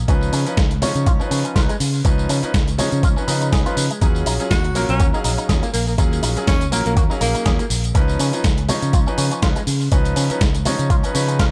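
A fingered electric bass opens this groovy, sleek nu-disco excerpt at 0.0 seconds, its tone warm, direct and amped. A brilliant baby grand piano joins with open, long-sustaining chords that pump against the sidechain and trail tape echo. A gritty, compressed sampler-style soul kit adds hi-hat, a medium-tuned snare and tambourine with overdrive and tape echo, while an overdriven electronic kick gives a thumpy punch. Tucked in the background, a dark, clean electric guitar plays a filtered riff through subtle chorus and tape echo, and the sixteenths carry a light swing. From 4.5 to 7.6 seconds a breathy tenor saxophone takes a brief, intimate solo, close-miked and whispered, with soft attacks, scooped notes and light vibrato. The harmony moves from Db9 to Ebm11 and back in an echo-heavy mix with light reverb and digital ambience, cut from a longer piece.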